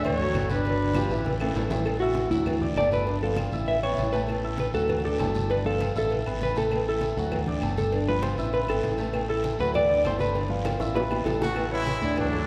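A dark, clean hollow-body jazz guitar stands out most, taking a fingered solo up front from 1.9 to 11.6 seconds in this festive, joyful salsa excerpt at 198 BPM in a straight 4/4. A mellow, punchy trumpet section with light vibrato states the melody at the start and returns near the close, over a clear, smooth grand piano with a vintage tone and a round, dark fingered electric bass sitting up front. The percussion is dense: low-tuned congas with a thick skin sit in the background, tight high-tuned bongos and cowbell play very quietly, ringing metal-shelled timbales and agogo bells sound distant, and a raspy, band-limited guiro and woody, dry claves fill in the texture. Drum fills mark the handoff into the guitar solo and again just before its end. The harmony cycles around D, G and suspended or added-ninth A chords, and a wet hall reverb gives the whole ensemble a spacious, churchlike bloom.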